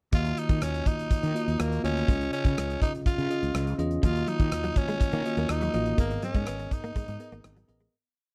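A light reverb gives this short, complete 1980s-style pop piece a polished sheen as it moves through a dramatic, urgent verse in Eb minor at 123 BPM, built on Ebmadd9, Dbadd9 and Abmadd9 chords before fading out from 6.0 seconds. Up front, a gated 80s drum kit with a tight kick and big backbeat plays alongside a growly fretless electric bass playing a syncopated pop-funk line with muted ghost notes and chromatic approach notes, while a bell-like tine electric piano pushes drop-2 chords. A raspy, gritty tenor saxophone with vibrato and slapback echo carries punchy hook phrases, and from 4.0 seconds a clean, compressed direct-recorded electric guitar adds a muted single-note line in the background, treated with ensemble chorus and slapback echo.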